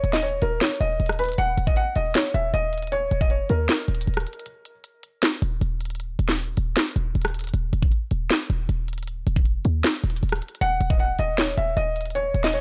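A half-time trap groove in 4/4 drives this hard-hitting, melancholic hip hop excerpt, built on an electronic trap drum kit of knocking kick, sharp snare, crisp hi-hats and rim clicks, roughened by vintage 12-bit sampler grit. A short 808-style bass runs throughout, punchy and tight, a sine tone with a noise layer, a fast attack and a decaying tail. Above them, a felt-muted upright piano carries a soft, mellow melody, its boxy tone, short sustain, thin felt and audible action noise giving it an intimate character, with tape echo trailing its notes. The piano drops out at 4.4 seconds, a brief break arrives at 4.5 seconds, and the melody comes back at 10.6 seconds. All three parts sit up front in a dry mix with little reverb.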